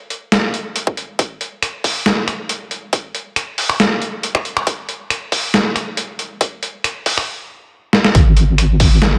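A light reverb gives this dark, cavernous deep dubstep fragment a shadowy sense of space, cut from a longer piece and moving with a half-time feel. A sampler-style trip hop kit opens it, with finger snaps, hi-hat and a medium-tuned snare that sound pitched down, muffled and compressed, carrying a tape warmth from being re-recorded in a small room. At 0.9 seconds a punchy, layered electronic kick joins up front, shaped by a high-pass filter. The long build-up ends in a drum fill at 7.9 seconds. The drop lands at 8.1 seconds with a deep, soft wobble bass, a detuned blend of square and sine tones with a fast attack and sustained body, thickened by chorus and saturated through tube warmth into a dark, wobbling weight.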